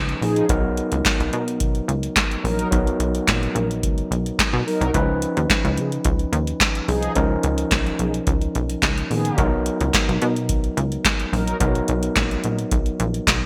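A gritty, overdriven tine electric piano and a punchy, plucky analog bass open this excerpt of early-eighties boogie funk at the very start, setting a danceable, feel-good groove at 108 BPM in a straight 4/4. A booming analog drum machine joins at 0.1 seconds and sits up front with a deep kick, crisp snare, metallic hats and handclaps, carrying gated reverb along with a short room on the snare, clap and hats. The bass has a sawtooth-and-square bite with a fast, decaying filter pluck. The piano sounds barky through a combo amp, while a round, detuned synth brass line with chorus and vibrato enters at 0.2 seconds as a mellow second voice. The harmony moves from Bmaj7 to C#9 and back to Bmaj7 under bright 1980s-style digital production with light reverb.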